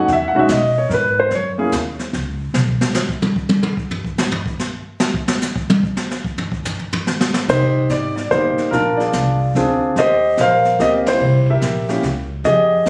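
A swung 3/4 lilt at 146 BPM carries this moody, smoky jazz piano trio fragment, cut from a longer piece and captured on a phone in a club-sized room. Up-front grand piano, with its action noise audible, opens over thumpy, woody gut-string pizzicato bass and the brushed kit, which plays from the start and, with its dark cymbals, high-tuned snare and boomy kick, takes a solo from 2.5 seconds. At 7.5 seconds piano and bass return in C minor through Cm7, Bb9, Eb69 and C7b9, and the band hits an accent at 11.0 seconds.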